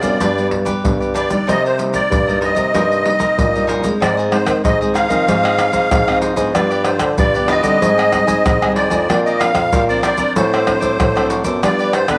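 A straight 4/4 samba-choro groove at 95 BPM rolls along on a deep surdo, pandeiro, tamborim and maracas played with soft hands, sitting up front with a vintage, band-limited character. Over it, a reedy, shimmering musette accordion carries a yearning, bittersweet melody in C minor, while a mellow bassoon with light vibrato holds the bass, and a crisp picked cavaquinho and a fingerpicked classical nylon-string guitar with fresh strings fill in the harmony. Moderate echo-chamber reverb with small-room ambience wraps the ensemble, and at 4.0 seconds the harmony turns toward a new passage that runs through to the end of this section cut from a longer piece.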